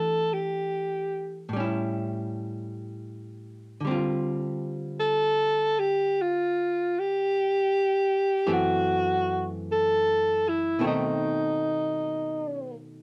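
A home cassette recording with light reverb captures this wistful, melancholic jazz ballad in a slow swing, cut from a longer piece. Up front, a clear, vintage-toned alto saxophone carries the melody in a breathy subtone with light vibrato, soft attacks and scooped notes. Beside it, a dark, clean hollow-body electric archtop guitar, picked and miked through an amplifier, comps through chords from Em7 and A7 to Dm7, then F#m7b5 and B7b9 near the close at 10.8 seconds.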